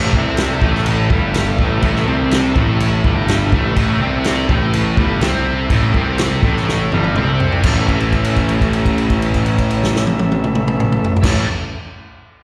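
A straight 4/4 groove drives this swaggering, raunchy excerpt of blues rock power trio and southern rock, where a vintage drum kit with a punchy kick and rolled-off top, a bright double-tracked distorted guitar riff with slapback echo, and a growly fuzz bass sit up front over a gritty tonewheel organ with key click and subtle chorus holding sustained chords in the background, all heard as a live gig through the venue's PA with recital hall reverb, as the harmony moves from A5 to A after a drum fill at 6.7 seconds and a held note rings from 7.6 seconds.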